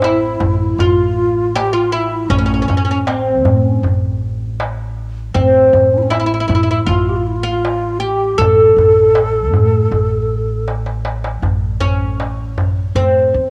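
A home recording on cassette, bathed in a moderate spring reverb, this stately Arabic maqam ensemble piece is cut from a longer performance in a steady four. The oud carries the melody up front, its bright, woody double strings plucked with a plectrum on the fretless neck and colored by a cassette-tape grain. Beneath it, a breathy, mellow ney plays a second line with vibrato and expressive tongued phrasing, also carrying a tape character, until it falls away at 10.7 seconds. The upright bass sits close and thumpy, its pizzicato steel strings giving a low, warm foundation, while a large, deep darbuka with a metal shell adds crisp, compressed and saturated strokes. A drum fill from 10.7 to 11.4 seconds leads into a brief new section that carries the oud and bass to the close, with the darbuka dropping out just before the end.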